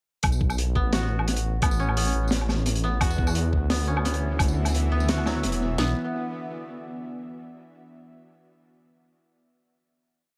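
Half-time drum and bass at 173 BPM in B minor, spacious and cinematic, this short piece opens at 0.2 seconds straight into a drop where a deep, rumbling detuned saw bass with tube saturation holds long gliding notes beneath a trap kit's knocking kick and sharp snare and a gritty, saturated breakbeat kit of closed hat, high-tuned snare, tambourine and low woodblock soaked in dub echo. A woody, fingerpicked koto enters at 0.8 seconds with a 12-step arpeggio loop drifting against the bar through analog delay, while a tense, nasal, string-like drone with vibrato and sidechain pumping arrives at 4.2 seconds and carries the closing B minor chord from 5.8 seconds. The echo-heavy mix sits in light reverb.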